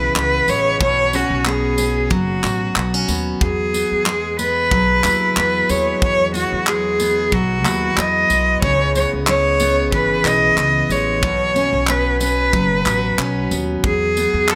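A gently swung sixteenth-note groove in 4/4 carries this easy-going, heartfelt acoustic pop excerpt, with a modern studio drum kit entering at 0.2 seconds on handclaps, tambourine and a punchy kick, its small-room sound airy and polished. Beneath it, a pizzicato upright bass gives a woody, thumpy low end with a bright steel-string edge. A picked dreadnought steel-string guitar fills the middle with warm accompaniment, softened by plate reverb. Up front, a single bowed cello sings the melody in a clear, smooth and even voice with vibrato, carried by plate reverb and delay. The harmony cycles through C#m7, Bsus2 and Eadd9 within a moderate studio ambience, giving the passage a tender, unhurried lift.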